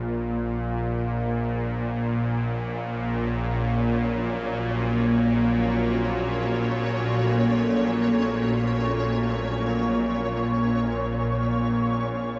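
Desolate and ominous, this dark ambient drone drifts in free time, a short cut from a longer piece tuned to A4 = 442 Hz. A tense, string-like bowed drone sits up front in the low register from the first moment, its detuned sawtooth tone bright and edged with a noise layer and vibrato. Above it, a deep, moody pad holds sustained chords, full-bodied and dark with a sub octave and chorus, moving from Bb minor to Gb minor at 2.3 seconds. At 3.2 seconds a grainy, flickering texture joins higher up, quieter than the other parts, its granular triangle tone shimmering through lush chorus. The whole mix is soaked in a lush hall reverb with a 2.8-second decay and rolled off above 7.9 kHz, giving it a dreamy, submerged haze.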